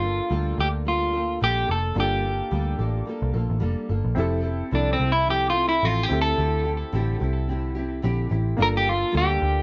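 Indie and bedroom pop in G dorian at 109 BPM with a gentle 16th-note swing, this hazy, mellow excerpt sets an up-front clean electric guitar melody, soloing from 4.2 seconds, over fingerpicked nylon-string guitar awash in lush chorus and vibrato, a woody, slightly detuned upright piano with audible action noise and cassette-tape colour in the background, and a round, dark, foam-muted picked electric bass, all under light reverb as the chords move from Gm9 through Fmaj7 and D9sus4 back to Gm9.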